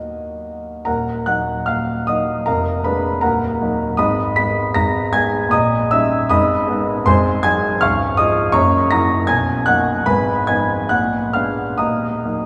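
A concert grand piano opens alone in a stormy, bittersweet romantic character piece, its intimate, up-front tone carrying deep bass and audible action noise as it moves freely in rubato across a span from Db1 to Cb7. The harmony darkens and brightens in turn, passing through a major chord at 7.8 s and a lush major-seventh colour at 9.3 s before a tense dominant pulls back to the home minor chord at 11.8 s. A cathedral-like reverb with a long, wet tail surrounds the natural sound of the instrument in this short excerpt from a longer work.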